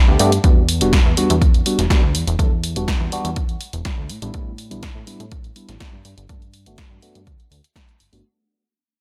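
An overdriven electronic kick drum sits up front in this sensual, funky filtered disco house fragment at 123 BPM in a straight 4/4, entering at 0.4 seconds with a punchy analog thump that carries the character of a large room. Alongside it, a punchy analog drum machine supplies hi-hat and an overdriven snare, with sidechain pumping on the hats. A plucky analog bass built from sawtooth and square waves gives a fast-attack, decaying filter pluck between E1 and A2, pumping under the sidechain and darkened by a low-pass filter. A tine electric piano plays the chords Em7, A9sus4 and Gmaj9 from G3 to A4. It sounds clean, as if through built-in speakers, and is coloured by phaser, vintage 12-bit sampler grit, sidechain pumping and a low-pass filter. The overall sound is dry, with a filter sweep and a fade-out running across the whole 8.2 seconds, cut from a longer track.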